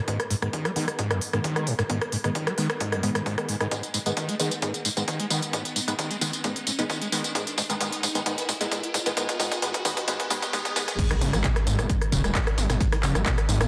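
A squelchy, screaming distorted acid riff opens this hypnotic, relentless peak-time techno cut alongside punchy detuned supersaw stabs, a tape-warm electronic kick and an up-front techno kit of crash, handclaps, smooth hats, rim click and tambourine, with filter sweeps on both synths and a background riser building through a drum fill to the drop at 11.0 seconds. There an electronic impact lands, a gritty, aggressive bass with oscillator sync and ring modulation enters up front with sidechain pumping, and a very quiet, dusty sampler-style kit of hi-hat and snare joins. The acid line carries lush chorus and tape echo, and the stabs a phaser, all set in a moderate digital room reverb under a dense, heavily limited master.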